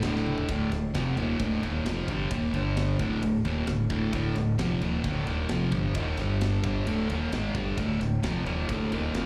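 Epic and relentless, this 132 BPM heavy metal excerpt in D phrygian drives a sludgy, double-tracked overdriven guitar riff with slapback echo between Dm and G5 over a growling, punchy fingered bass and a tight metal drum kit of kick, snare, ride and toms that opens with a fill at 0.3 seconds, the band heard live through a club's PA.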